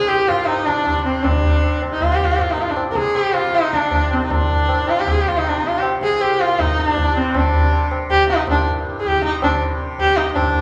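A rich, focused bowed sarangi opens this solemn, introspective Hindustani classical fragment, its single voice gliding with light vibrato and portamento over a softly plucked, buzzing tanpura drone that shimmers beneath. Low-tuned, ringing tabla enters at 0.1 seconds, sitting close while the sarangi stays up front with its sympathetic strings sounding. The whole passage gradually speeds up, cut from a longer performance and bathed in the generous reverb of a recital hall.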